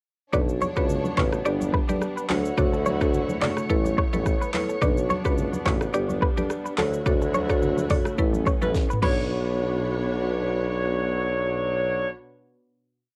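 A lightly swung afrobeats groove at 107 BPM in B minor sets a mellow, smooth mood. An electronic afro-pop drum kit with deep kick, sharp snare, syncopated rim clicks and shaker sits up front, bright congas play in the background, and a tuba with light vibrato carries a bouncy, syncopated bass line. A woody, round synth pluck with chorus adds syncopated chords, a twangy clean electric guitar with tremolo and tape echo repeats an interlocking figure, and a lush, bowed string section holds a sidechain-pumped pad over a Bmadd9, G, Dmaj7, Aadd9 progression; during a band accent and just before a drum fill, a punchy horn section enters at 8.6 seconds with punches at phrase ends before a final hit at 9.3 seconds closes this dry home recording on cassette.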